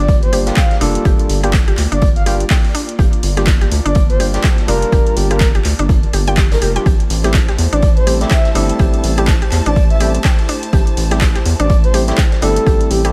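This deep house excerpt opens at 0.0 seconds with a breathy, flute-like synth lead carrying a soft, warbling melody through chorus and digital delay, over an airy pad holding sustained chords in the background and a woody, mallet-like FM pluck tracing bright arpeggios with a touch of cassette-tape color. Underneath, a rubbery, hollow square bass bounces with a dark tone, while a barely audible electronic impact marks the start. The groove sits at 124 BPM in 4/4 with a swung sixteenth-note feel in G dorian. An up-front, punchy electronic kick with overdrive anchors it, joined by an overdriven analog drum machine playing handclaps and hi-hat, both re-recorded in a large room, and a very quiet, gritty garage kit adding snare and hi-hat with a rolled-off top. A barky tine electric piano fed through a combo amp drops stabs with 12-bit sampler grit and delay, and the pad, pluck, bass and piano all pump against the kick. 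At 6.9 seconds the harmony moves from Gm7 to Am7 and a rich, expressive violin section enters in the background on a high A, deepening the smooth mood inside a digital ambience.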